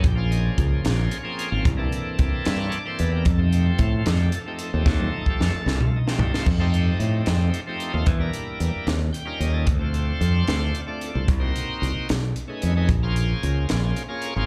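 Growly, up-front fingered electric bass, a crisp drum kit with a punchy kick and high-tuned snare in a pumping small room, and a shouting, lightly overdriven tonewheel organ with key click, slow rotary speaker, plate reverb and slapback echo open this funky, soaring electric jazz fusion excerpt in 6/8 at 75 BPM in F mixolydian, moving through chords such as Bbm9, C13 and F9, with a drum fill from 4.9 to 6.5 seconds and a brief organ fill at 8.9 seconds, all captured live through a club PA with light reverb.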